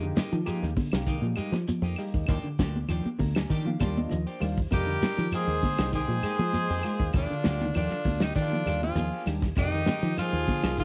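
Afrobeat, funky and defiant, cut from a longer piece and captured as a cassette home recording with light reverb: a dry, dark soul drum kit sits up front with a punchy, foam-muted fingered bass, congas, a grainy shekere and woody claves, while in the background a barky, overdriven tine electric piano with phaser, a slightly broken-up guitar playing arpeggios and a clean guitar's stabs move between Fm11 and Ebmaj9, the piano adding a fill from 2.9 seconds and the drums one from 3.8 seconds before, at 4.7 seconds, a raspy, gritty tenor saxophone takes the melody up front over a close-miked trumpet and a very quiet, tight trombone section.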